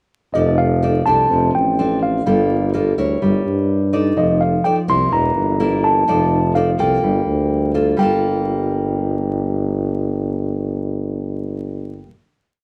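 A straight 4/4 bossa nova pulse at 126 BPM carries this short, complete piece in G minor, intimate and smooth in mood. A nylon-string guitar sits up front with a bright, classical tone, fingerpicking thumb bass under syncopated plucked chords, while a tuba supplies the bass with dotted root-and-fifth figures, soft attacks, scooped notes and a light vibrato in a roomy, jazz-style manner. Over them, a mellow tine electric piano plays a clean, direct melody built from motifs shaped into sentence-like phrases. The harmony circles through chords such as F6, Dm7/F, Gm9 and Gdim7 before all three parts settle onto a final chord held from 8.0 seconds to about 11.8 seconds. The band sounds as if playing together in one room, with moderate studio reverb and a vinyl crackle adding a lived-in character.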